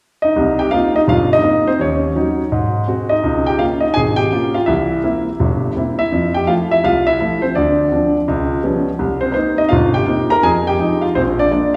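A warm, intimate grand piano plays alone, up front and natural, its action noise audible beneath the notes as it ranges from deep bass to the upper register. This cool, moody solo jazz piece swings briskly in four, moving through shifting minor-seventh and dominant harmonies before coming back to C minor around 9.0 seconds. A wet recital-hall reverb surrounds the instrument in what sounds like a church or concert hall, and the passage is cut from a longer performance.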